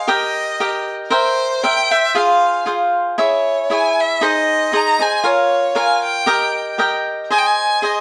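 This short festive, romantic Mexican folk passage opens with a bowed violin and a picked cavaquinho sounding together from the first moment, both placed up front. The single violinist carries the melody with a rich, focused tone and vibrato, singing in the upper register between C5 and Bb5. Beneath it, the acoustic cavaquinho supplies a bright, crisp accompaniment at a moderate 116 BPM in a straight 2/4, sitting in Ab major. The harmony passes from Eb/G through C7, Fm and a darker Dbm before settling back toward Ab, then moves through Bbm and Eb to resolve on Ab at 7.3 seconds. The duo plays live in one stone room whose moderate reverb lends the pair an airy, intimate glow across the eight seconds, which are cut from a longer piece.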